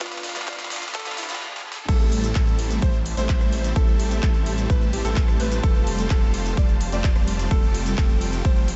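Lightly reverberant with a softened top end, this euphoric, anthemic festival progressive house excerpt opens with a build-up in which a boxy picked steel-string acoustic guitar plays until 1.4 seconds alongside a very quiet riser. Drum fills and a stop lead into the drop at 1.9 seconds, where a thick detuned saw bass with tube saturation and chorus enters. Around it sit full-bodied chorused supersaw chords carrying the riff and dark, mellow grand piano arpeggios with analog delay. A lush bowed string section holds sustained chords in the background. An overdriven big-room kit adds a huge snare, handclaps, cabasa, rim click, hi-hat and crash, set against a punchy, up-front electronic kick. Sidechain pumping moves the guitar, strings, piano, supersaw and bass.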